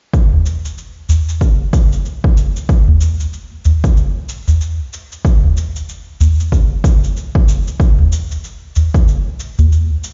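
A loose, swung sixteenth-note groove in 4/4 drives this meditative, earthy piece of organic downtempo, cut from a longer work. A punchy, overdriven electronic kick sits up front beside a deep, close udu, while a faint, produced cabasa with a small-room tint hovers behind; the kick drops out at 9.0 seconds. The whole sound is dark and roomy, like a big system playing in a bare space, carried by a large studio reverb.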